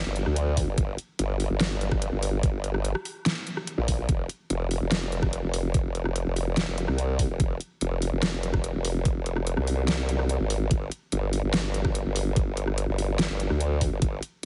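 A formant-filtered wobble bass anchors this heavy wobble dubstep fragment, its sawtooth and sine tones wobbling in the low register from F1 to D2 with a fast attack, sustained notes, chorus and overdrive pushing it up front. The mood is chaotic and aggressive, set in a half-time feel in 4/4. A layered electronic drum kit of hi-hat, rim click and a huge overdriven snare sits forward in the mix, joined by a knocking, distorted electronic kick that enters at 0.6 seconds. The kick drops out briefly from 9.9 to 10.7 seconds before returning. The overall sound carries light reverb and a crushed, heavily compressed radio-like quality, its top end rolled off above 11.0 kHz, and the passage is cut from a longer piece.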